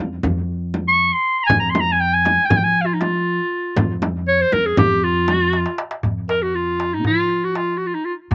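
A punchy, forceful clarinet with light vibrato plays a jazz-style solo melody up front over woody pizzicato upright bass on steel strings. A deep, dry frame drum enters almost at once, and a crisp metal-shell darbuka played with hard hands joins at 1.5 s. This hypnotic, melancholic Turkish makam ensemble piece is in F makam nihavent, moving in 9/8 at 238 eighth-note beats per minute. A drum fill at 5.5 s leads into a new section at 6.0 s, and the recording sounds open-air, with little reverb.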